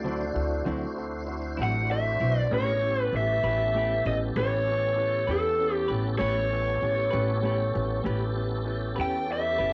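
A swaggering, gritty slow blues in 12/8 opens with an overdriven garage guitar carrying the melody up front over a woody, thumpy pizzicato upright bass, a clean, compressed electric guitar shimmering with harmonic tremolo, a clear, polished grand piano and a full tonewheel organ turning through a slow rotary speaker with chorus vibrato, the chords moving from D9 to A9 at 2.5 seconds in a small-room home recording on cassette.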